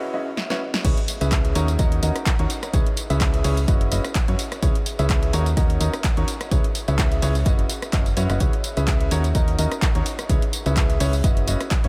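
A brilliant, worn grand piano opens this energetic, bittersweet piano house excerpt at 127 BPM in C# dorian, its riff pumping with sidechain and trailed by tape echo over chords cycling through F#7sus4, C#m7 and D#m7, before a punchy analog drum machine of crash, handclaps, hi-hat, rim click, snare and tambourine enters with a fill at 0.4 seconds and the drop lands at 0.8 seconds with a tape-warm electronic kick and a round, dark FM bass that also pumps, joined a moment later by a barely audible brushed acoustic kit, all riding a swung 16th-note groove in light small-room reverb.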